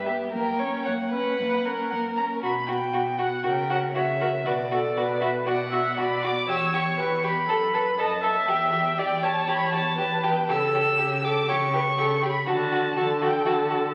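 A rubato 4/4 pulse around 120 BPM drives this quick, spirited and graceful classical-period movement for string quartet, which moves from B minor into D major at 10.5 seconds. A rich, focused first violin carries the melody up front with vibrato. A second violin with soft attacks and expressive portamento plays a second line, a smooth, even viola fills the accompaniment, and a close, slightly quieter cello sliding between notes anchors the bass. The sound is bathed in a recital-hall reverb and comes through the crackle of a very old 78 rpm record.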